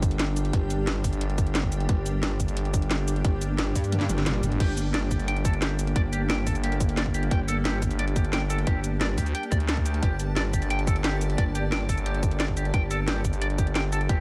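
Dark and tense, this excerpt of technical drum and bass in G minor at 177 BPM drives on a tight, overdriven kick and a cracking snare with metallic hats from a small-room kit, under a growling FM bass and a saturated, wobbling metallic bass that enters at 0.5 seconds, while a swarming detuned drone and a blurred granular cloud pad pump in the background, the kick drops out for a drum fill at 3.9 seconds, a very quiet electronic swell follows, and from 4.6 seconds a bright, clean picked electric guitar plays arpeggios through spring reverb and tape echo.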